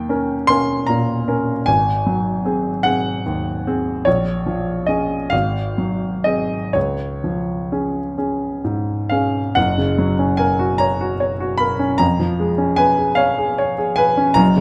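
Set in 12/8 and played with free, breathing rubato, this romantic classical nocturne for solo piano unfolds slowly and feels tender and serene. A baby grand carries everything alone, its tone clear and natural, with a short sustain that keeps each note distinct and up front, spanning from F#1 to C6. The opening section moves through gentle seventh chords that settle onto a resting chord before the music shifts into a new key at 9.6 s to begin a second section. Close, detailed miking captures the instrument intimately, while a moderate recital hall reverb lends a soft sense of space around it. The passage is cut from a longer piece and breaks off at 14.6 s.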